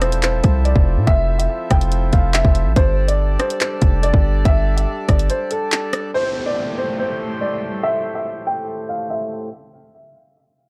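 Drill-style hip hop in A minor at 142 BPM with a half-time feel, this dark, tense excerpt is cut from a longer piece. A woody upright piano carries the melody through a low-pass filter and digital delay, while a reedy, breathing harmonium holds sustained chords beneath it across the full 9.5 seconds. Up front, a punchy, heavy 808-style bass with a sine tone, a noise layer, a fast attack and a decaying tail drives the low end until 5.3 seconds, alongside an electronic drill kit of hard-clipped kick, handclaps, rim clicks and warm hi-hats. During a brief break from 5.3 seconds, the drums drop out at 6.0 seconds, and from 6.1 seconds a filter sweep and an electronic downlifter carry the closing passage as the harmony moves from Fmaj7 and Gsus2 to Am7. The production is dark and warm, set in a digital ambience.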